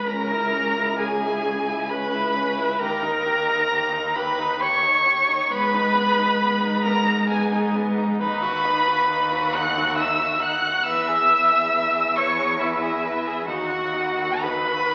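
In a rubato 3/4 at about 67 BPM, this slow romantic movement for string quartet unfolds lyrically and tenderly, starting in G# minor and turning toward B major at 8.2 seconds. A rich, focused first violin carries the melody high above the ensemble, sung with vibrato and placed up front. Beneath it, a clear second violin traces a quieter second line, while a clear, close viola, also up front and bowed with vibrato, fills in the accompaniment with notable presence. A rich cello, set more distant, anchors the bass from low in its range. The quartet sits in a reverberant recital hall, and the sound carries the crackle and aged character of a very old 78 rpm record, heard here as a brief passage cut from a longer piece.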